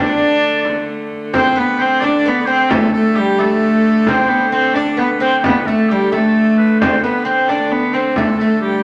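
A wet studio reverb surrounds this driving, ancient-feeling medieval dance excerpt in 6/8 at 88 BPM, where a warm, nasal viola da gamba with light vibrato and an airy, gut-string bow carries the melody up front, joined by a bright, close-miked shawm and a delicate fingerpicked lute on second lines, while a reedy hurdy-gurdy drones in the background and a deep, distant frame drum played with hard hands enters at 0.7 seconds.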